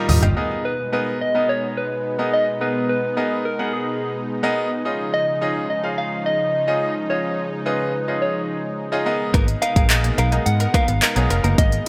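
A round, gentle FM synth lead with chorus and delay carries the melody from 0.7 seconds in this energetic, driving dance-pop excerpt in G# dorian at 107 BPM, riding a clear concert grand piano and a lush, detuned sawtooth pad that both pulse with sidechain pumping over G#madd9 and C#add9 chords. After a brief opening drum fill, the deep house kit, with its deep kick and smooth hats under gated reverb, returns at 9.3 seconds alongside a dark, foam-muted fingered bass, a picked, direct-recorded clean electric guitar riff with analog chorus, and background arpeggios from a punchy, warbling unison pluck. A crisp, close group handclap sits very quietly from 9.9 seconds, all within a bright 1980s-style digital production and a moderate plate reverb.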